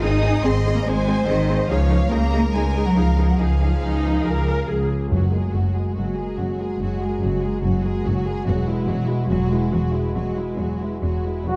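A straight 4/4 pulse drives this heroic, triumphant stretch of adventure film score, cut from a longer piece. Bowed strings carry it from the first moment: a lush violin melody with expressive vibrato and a soft attack sits in the background, while a second violin line and rich violas fill the middle. Beneath them, warm, expressive cellos and a clear double bass section anchor the bass, the basses sitting up front despite their distant quality. At 5.1 s the harmony shifts into F# mixolydian as mellow French horns add sustained chords and round, soft-mallet timpani enter briefly. In the final moment at 11.5 s, a mellow solo clarinet adds a brief second line while a vintage-toned trumpet section sounds a stab before the cut. A moderate scoring-stage reverb gives the whole a dark production.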